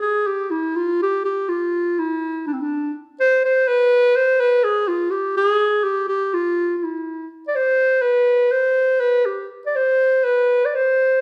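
A mellow clarinet opens the recording alone and carries this Turkish piece in free time, played in a classical style. Its tone is present and up front, moving between C4 and D5 across the full 11.2 seconds. The mood is festive yet stately, with the unmeasured phrasing giving the line room to breathe. A moderate large-studio reverb with a 1.3-second decay surrounds the instrument, lending it the sense of a live performance in one room. This short passage is cut from a longer piece.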